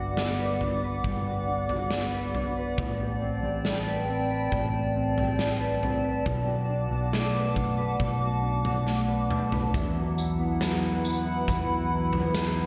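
A slow, straight 4/4 at 69 BPM opens this ethereal, blissful dream pop excerpt, with a huge arena drum kit entering at 0.2 s with a punchy kick, medium-tuned snare, tambourine and toms, rolling into a fill at 8.9 s. A round, dark fretless bass sits under clean, compressed electric guitar arpeggios soaked in lush chorus, tape echo and slapback. Above them, a warbling, nostalgic lo-fi pad of detuned square and triangle tones with a sub octave holds slow-blooming chords from Gmaj7 through Am9 and Bm7 before settling on Esus2 at 9.7 s, all inside a big, wet hall reverb.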